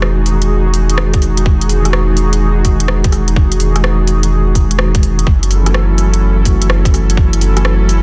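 Nocturnal and rainy, this short cut from a longer future garage piece moves in 4/4 with a loose, swung sixteenth-note feel. A mellow, clean tine electric piano carries the accompaniment through a delay, its tone suggesting built-in speakers, while an airy, breathy pad with a detuned, nasal edge, a noise layer and chorus sustains soft chords above it. Underneath, a deep, round dub sub bass sits up front, and it, the piano and the pad all pump against the sidechain. An organic electronic kit supplies crisp, tape-tinged hi-hats and rim clicks, with soft clipping on the snare, and a tight, layered electronic kick joins at 1.1 seconds and drops out at 7.3 seconds. The harmony shifts from Emaj9 to F#m7 at 5.3 seconds, all set in a digital ambience under a dense, heavily limited modern master.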